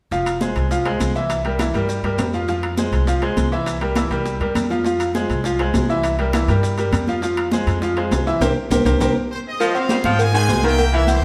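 Salsa at a driving 202 BPM in F minor, passionate, with a brilliant grand piano up front over a woody, growly pizzicato upright bass, while high-tuned congas, very quiet low-tuned bongos and cowbell, ringing timbales and agogo bells, and grainy maracas fill out the percussion in a live stone room. The harmony rocks between Fm and C7 until a drum fill and band accent from 8.4 to 9.6 seconds. A bright trumpet section with light vibrato takes the melody at 9.3 seconds, joined at 9.6 seconds by a smooth baritone saxophone line in the background as the chords settle on C7.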